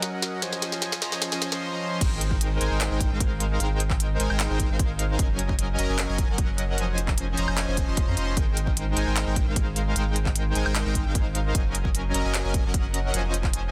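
An airy, detuned supersaw riff leads this lush, euphoric future bass excerpt in a half-time feel, its sound pumping from sidechain compression and trailing tape echo. A deep, saturated sub bass pumps beneath it, while a trap kit with a sharp snare, crisp hats, handclaps, woodblock and crash plays a fill through a short build-up as a filter sweeps across the supersaw. At 2.0 seconds the drop arrives with a hard-clipped electronic kick, over chords moving through Abmaj7, Gb69 and Dbmaj7/F in a digital ambience, all under a dense, heavily limited master.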